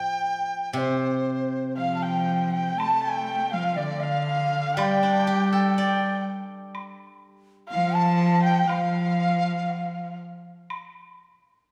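A reedy, buzzing large dizi carries the melody with vibrato over a silvery, fingerpicked steel-string zither as this pastoral, graceful Chinese traditional chamber piece opens in a slow, rubato 2/4 at 60 BPM; a nasal, up-front bowed cello and an airy, intimate erhu join with second lines at 1.8 seconds, a dark woodblock enters at 2.8 seconds, and the zither falls away at 7.7 seconds, the ensemble heard in the lush reverb of a recital hall.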